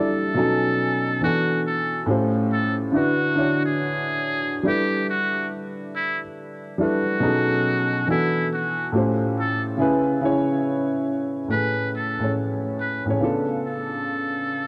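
Nostalgic and reflective, this hip hop fragment, cut from a longer piece, moves at an unhurried pace with a lazy swing on the sixteenths. A dark upright piano carries the accompaniment from start to finish, sounding woody, intimate and slightly detuned, with audible action noise and a cassette-tape character softened by a low-pass filter. Over it, a trumpet with a metal mute plays a jazz-style solo melody in a narrow middle range, its tone buzzy and thin yet brilliant, with vibrato, soft attacks and scooped notes that lend a vintage flavour. The harmony drifts through rich jazz chords such as B13, E9sus4 and A7alt before shifting at 11.5 seconds to a new section opening on Amaj9 and closing on C#7b9b13. Both instruments sit up front in a dark production bathed in a moderate plate reverb.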